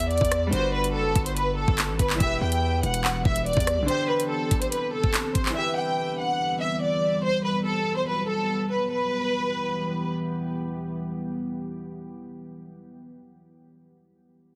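Cold and ominous, this half-time drill excerpt in E minor at 143 BPM opens with a lush, bowed violin section carrying the melody over a clear, short-sustained grand piano, a punchy sine-based 808 bass with a noise layer, and a drum kit of knocking kick, metallic hats, rim clicks and handclaps. The 808 drops out at 3.9 seconds and the drums at 5.6 seconds, while a dark, detuned sawtooth pad with chorus and a sub octave swells in from 3.0 seconds and sustains to the end. The mix carries light reverb and a heavily compressed, radio-like sound, with the strings staying smooth and even on top.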